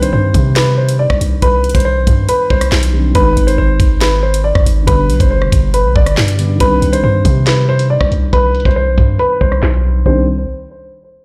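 A dark, worn grand piano carries the melody up front, its action noise audible and its tone softened by a low-pass filter and trailed by delay. Beneath it, a felt-muted upright piano adds boxy, thickly padded accompaniment, filtered and intimate. A deep, sine-like 808-style bass holds long, mellow notes with a fast attack that decays. The electronic drill kit sits up front in a half-time feel, with a knocking kick, sharp snare, metallic hi-hats, rim clicks, handclaps and crash cymbal. This menacing, ominous hip hop drill excerpt moves through Cm(add9), Ab and G before returning to Cm(add9) at 6.6 seconds, where a filter sweep runs until 10.1 seconds. The mix sounds as if played on a big sound system in a bare stone room, with little reverb on the parts themselves.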